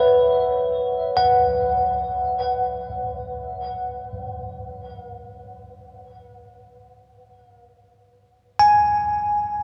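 Ambient and weightless, this brief excerpt in free time features a solo tine electric piano, bell-like, bright and clean, sitting up front with a direct tone over a suspended chord in its upper register, its notes trailing into a diffuse ambient delay and spreading through the vast, echoing wash of a cathedral reverb.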